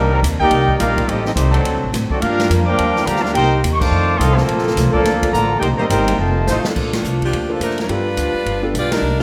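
A warm, smooth-topped trumpet section carries the melody of this energetic big band swing cut in Bb major at 212 BPM, with a clear trombone section on a second line and a brilliant trombone section holding sustained chords in the background, both trombone sections with light vibrato. Underneath, a woody pizzicato upright bass sits up front beside a very quiet, boxy picked steel-string acoustic guitar and a natural drum kit with a medium-tuned snare, boomy kick, hi-hat, ride and crash. A drum fill at 6.5 seconds hands the melody to a bright, close-miked saxophone section, and a clear concert grand piano with deep bass and short sustain joins in the background from 7.5 seconds, all in a moderate concert hall reverb.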